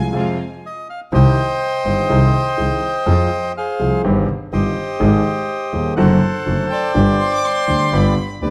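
Tango in C minor at 123 BPM with a rubato feel, this sultry, melancholic cut from a longer piece sits in a stone room whose reverb gives the live ensemble a wet sheen. A bowed chamber violin section with gut-string tone and light vibrato opens briefly before the dark, reedy bandoneon takes the melody up front at 0.7 seconds, over an intimate concert grand piano with audible action noise and deep bass, and a biting, earthy bowed double bass. The violins return near 7.2 seconds as the harmony moves through D7/F# and Gsus4 to G.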